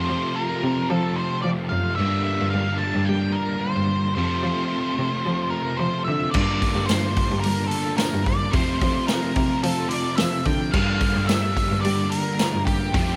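This dark, hypnotic psychedelic rock passage in G minor opens at 110 BPM with a fuzz-soaked octave lead guitar carrying the melody through tape echo, over a bright, overdriven, double-tracked stack guitar riff spun through a rotary speaker, a biting bowed cello on the bass line with vibrato, and a very quiet, reedy combo organ holding sustained chords with heavy vibrato. The harmony rocks between F and Gm7. A vintage drum kit with a punchy kick and dark cymbals enters at 6.3 seconds, and a jingly tambourine joins in the background at 6.9 seconds, all set in light reverb and small-room ambience.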